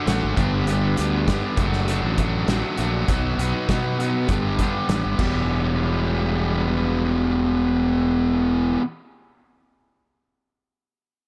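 A bright, compressed fuzz guitar riff opens up front alongside a very quiet, overdriven garage guitar that drops out at 0.7 seconds, launching a moody, restless indie rock passage in E minor at 100 BPM where a round, dark fingered bass with fuzz and overdrive and a loose acoustic drum kit with a tight kick, medium-tuned snare, hi-hat and crash in a pumping small room carry chords moving from G through D/F# and B to Em, the kit falling away at 5.3 seconds in a dim, lightly reverberant mix.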